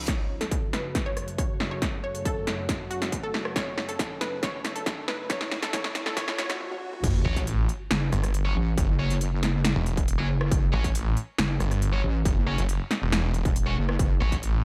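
A growling, sawtooth bass and a saturated, wobbling square-wave bass dominate the drop from 7.0 s, joined by bright, double-tracked distorted guitar stabs over a distorted electronic kick and a punchy, large-room dance kit with crisp hats. Before that, this heavy, chaotic half-time wobble dubstep excerpt builds with a lush, detuned unison pluck melody with delay over a morphing, warbling wavetable pad with sidechain pumping, under a drum fill, filter sweep and background risers, reverse cymbal and sub drop, ending in a brief stop before the impact. The production is dark and warm with light reverb.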